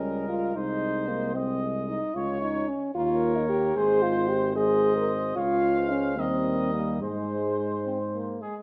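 In a straight 6/8 pulse at 75 beats per minute, this noble classical brass quintet passage in Ab major sets a mellow trumpet melody with light vibrato over a punchy flugelhorn second line in the background, while an up-front French horn with a smooth top and a distant, roomy trombone carry the accompaniment and a present tuba holds the bass, all five sounding together throughout the 8.6-second cut in the moderate reverb of a large studio.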